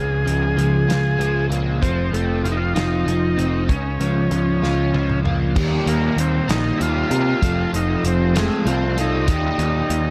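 A reedy combo organ with heavy vibrato, a bright, double-tracked overdriven guitar riff fed through rotary speaker and tape echo, and a round, dark overdriven bass open this hazy, trippy psychedelic rock excerpt in 6/8. A damped 70s drum kit joins at 0.3 s with a fat snare, tight kick and dark cymbals, and its fill from 4.6 s leads into an organ solo at 5.6 s over chords moving between Eb and F. The mix is echo-heavy, with light studio reverb around the parts.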